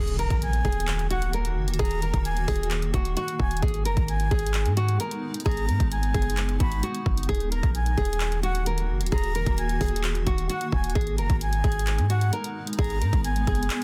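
A faint electronic impact opens this menacing trap cut at 0.0 seconds, sounding together with a deep, boomy 808-style bass and a fingerpicked classical nylon-string guitar carrying the melody, its finger squeaks audible through a low-pass filter and digital delay. The tempo sits at 131 BPM in a half-time 4/4 feel in Eb minor, and the harmony moves between Ebm and Abm. The bass is up front with a sine tone, a noise layer, a fast attack and a mellow decay, while a hard-hitting electronic trap kit drives it with a hard-clipped kick, bright hi-hats and handclaps re-recorded in a small room. Alongside them, a granular cloud pad holds blurred, evolving, detuned chords with a slow attack, long release and its own built-in reverb. A close-miked, breathy concert flute adds a high second line with a soft attack, straight tone and digital delay, and the impact ends at 1.8 seconds. The mix is dry and dense, with a heavily limited modern master, in a fragment cut from a longer piece.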